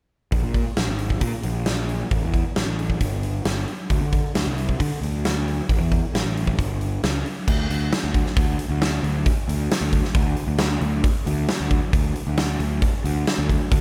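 A huge, up-front arena drum kit with a punchy kick, medium-tuned snare, hi-hat and crash cymbal anchors this smoky, heavy blues rock and southern rock excerpt in a straight 4/4, playing throughout alongside a fuzzy, overdriven picked electric bass, all captured with little reverb as the music shifts into a new section at 7.5 seconds.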